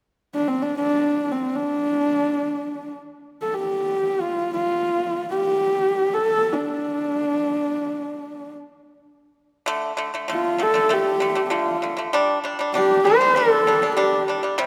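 Vast and solemn, this Mongolian folk passage is cut from a longer piece. A dark horsehead fiddle carries the melody from 0.3 seconds, one bowed player on horsehair strings with vibrato, portamento, a soft attack and an airy, husky tone that sits close and intimate, slightly boxy, up front. At 9.7 seconds a pipa joins with arpeggios in a lower register, its fingerpicked sound bright, dry and percussive, also up front though a little quieter than the fiddle. The harmony stays open in the first section, then settles on D5 as the pipa enters and moves to G5 near the close. A moderate concert hall reverb gives the room a sense of space around the two instruments.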